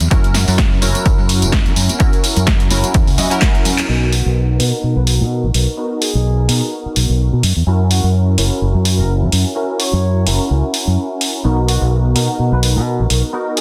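A swung 127 BPM groove in 4/4 drives this joyful, sunny excerpt of filtered disco house in B major, built on a punchy analog drum machine of overdriven snare, handclaps, hi-hat and tambourine, an up-front overdriven electronic kick that drops out at 3.5 seconds, and soft-handed tambourine and congas sitting in the background until 3.9 seconds. A direct, up-front fingered electric bass pumps under sidechain and a low-pass filter, while a funky, detuned sawtooth polysynth comp with ring modulation, chorus, phaser and cassette-tape colour plucks through chords moving from F#7 to Bmaj7. After a drum fill and band accent, a filter sweep begins at 3.9 seconds, and at 4.1 seconds a brilliant horn section with light vibrato enters in the background, trailed by dub echo, all under light digital reverb and a dense, heavily limited master.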